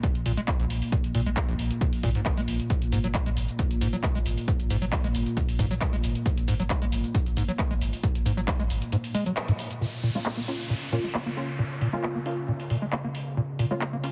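An overdriven acid bass riff opens this intense, industrial stretch of driving peak-time techno at 135 BPM in Bb minor. Its squelchy, resonant square-wave tone, dressed in lush chorus, pumps against a punchy electronic kick and a techno kit of handclaps, shaker and metallic hats under low-pass filtering. Beneath them a deep, moody ambient pad drones with a warbling, vintage chorus and its own reverb, while a round sine sub bass with tube saturation sits in the background; both pump with the kick's sidechain. The kick stops at 8.9 seconds, and after a band accent at 9.4 seconds a downlifter arrives as the harmony shifts from Absus2 to Bbm. From 9.8 seconds filter sweeps run across the drums and the acid bass, and at 10.2 seconds a muted, detuned sawtooth dub chord stab enters with ensemble chorus and dub echo, all within a heavily compressed, radio-like sound with light reverb.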